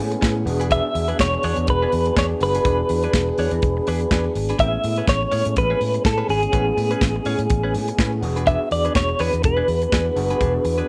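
A small-room ambience frames this joyful, danceable disco groove at 124 BPM in 4/4 with a light sixteenth-note swing, where a warm, fingered clean electric guitar carries the tremolo-tinged melody up front over a growly, amped fingered electric bass and a tight, dry, polished funk drum kit of hi-hat, kick and snare, while a bright, scooped direct-recorded guitar with phaser adds accompaniment, and a gritty, barky overdriven tine electric piano with medium tremolo and a dark, distant French horn section with light vibrato sit in the background over chords moving from E7 to Amaj9 and back to E7.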